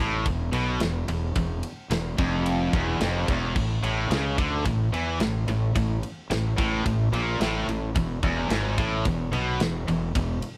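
Dark, warm, dry production with little reverb frames this short heavy metal cut from a longer piece, and its mood is grim and relentless in a straight 4/4. Three picked, distorted electric guitars sit in the background playing the riff between E2 and E3: two high-gain guitars, one of them double-tracked with a scooped tone, and a tight distorted guitar, all with a bright edge. Up front, a fingered electric bass with fuzz and overdrive growls beneath them in its low register. A tight acoustic metal drum kit joins at 0.3 s, also up front, with a mid-forward, big-room sound, a tight kick, a medium-tuned snare, and gleaming crash and ride cymbals. The harmony moves from E5 to A5 at 3.6 s before settling on E at 8.0 s. The guitars and bass stop at about 10.4 s, and the drums carry on until about 10.6 s.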